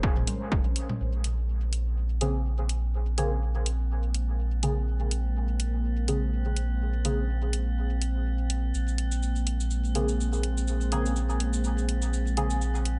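Hypnotic and nocturnal, this dub techno excerpt moves at 124 BPM in Bb minor with a light 16th-note swing, opening on a Bbm9 chord held by a deep, moody ambient pad in the background that evolves under a filter sweep from 1.0 seconds, while a round, soft sub bass sits up front with tube saturation and sidechain pumping. A punchy, overdriven analog kick sounds only in the first 0.6 seconds alongside brief analog toms trailing dub echo, a layered electronic hi-hat enters at 0.3 seconds and carries the pulse, and an eerie, metallic FM drone on C4 fades in from 1.5 seconds. Warbling, vintage chord stabs with phaser, cassette tape colour and dub echo enter at 2.2 seconds, a grainy, bright acoustic cabasa joins near the end, and the echo-heavy mix stays dark with lightly reverberant space.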